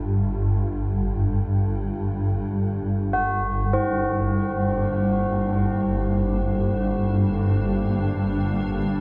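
In free time, this desolate, dark ambient drone excerpt in G harmonic minor opens on a swarming, detuned low drone with a filter sweep, joined at 3.1 seconds by solemn, metallic tubular bell arpeggios through a diffuse delay and at 4.1 seconds by a blurred, bright granular cloud pad fading in on a G minor chord, all set in a huge reverb.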